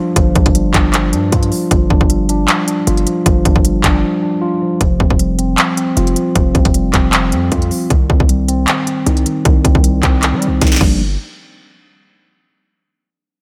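A hard-clipped kick, sharp snare, crisp hats, handclaps and crash from an up-front electronic trap kit drive this brooding, melancholic hip hop cut at 155 BPM in a half-time feel, with a punchy, heavy 808-style sine bass, layered with noise and fast-attacking then decaying, underpinning it. A mellow, clean tine electric piano, low-pass filtered and heard as if through built-in speakers, moves from G7(no3) through Fsus2 and Cm to Gm7 in a digital ambience. A break arrives at 4.0 seconds, the piano gets a filter sweep from 4.8 seconds, and a drum fill at 10.6 seconds closes this short section of a longer piece.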